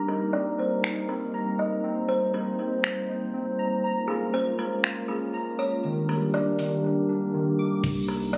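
Spacious and ethereal, this atmospheric cloud-rap excerpt in C minor moves at 120 BPM with a half-time feel in 4/4. Glassy, pure glass harmonica chords sit up front from the start, their slow attack and beating tone pulsing under sidechain pumping and a low-pass filter, while warbling, detuned lo-fi synth keys spin mellow arpeggios through chorus and digital delay as a filter sweep runs across the opening 7.8 seconds. A woody, thumbnail-plucked kalimba carries a short, bright melody in a narrow range, also filtered and echoed by digital delay. The electronic trap kit enters at 0.8 seconds with a knocking kick, metallic hats, finger snaps and crash cymbal, roughened by vintage 12-bit sampler grit, then drops out from 6.8 to 7.8 seconds. At 7.8 seconds a deep, round 808-style bass lands on a low C as the chords cycle from Cm7 through Db6 and Ebmaj7 back to Cm7, all captured with light reverb and a phone-in-the-room character.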